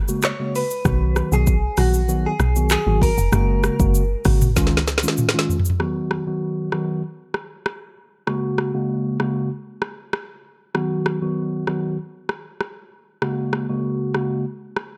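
Joyful and breezy, this afrobeats excerpt sets a mellow tine electric piano with phaser over an up-front electronic afro-pop kit of deep kick, woody snare, metallic hats, rim clicks, shaker, handclaps and toms, while a bright, lush-chorused clean guitar carries the melody and a round, dark log drum bass sits beneath, until a drum fill at 4.6 seconds opens into a break at 5.8 seconds where piano and drums carry on alone in a lightly reverberant space.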